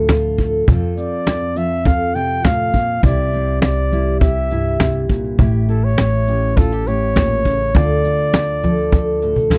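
A close-miked flugelhorn carries a solo melody in a classical style from 1.0 seconds in this short, pastoral acoustic folk clip, set up front over a full-bodied, fingerpicked dreadnought guitar and a woody, thumpy pizzicato upright bass. Brushes on a natural-sounding kit with a fat snare and tight kick play alongside a snappy cajon played with soft hands, and a drum fill lands at 9.4 seconds. The chords move from Dm through F, Cadd9 and A7 back to Dm, all captured in a dry, close 1970s-style studio sound.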